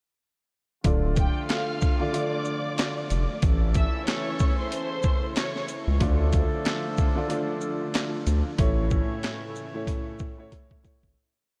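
Boom-bap hip-hop in D harmonic minor at 93 BPM, this short, dark and gritty piece rides a swung 16th feel over a Dm to A chord cycle. A sampler-style drum kit sits up front with a thumpy kick, a high-tuned snare layered with handclaps, quarter-note hi-hats and shaker in a sparse, compressed beat. Beneath it, a saturated sine sub bass plays a deep looped line with chromatic approach notes. A mellow, vintage grand piano with cassette-tape colour loops chopped chords, while a thick, detuned sawtooth pad with chorus and phaser holds sustained chords in the background. A distant horn section adds swelling stabs doubled in octaves with diffuse ambient delay, and a lush, bowed violin section carries a short, expressive melody in octaves from 1.2 to 5.7 seconds. The whole track sits in a small, lightly reverberant room, fading out from 8.6 seconds as a drum fill closes it.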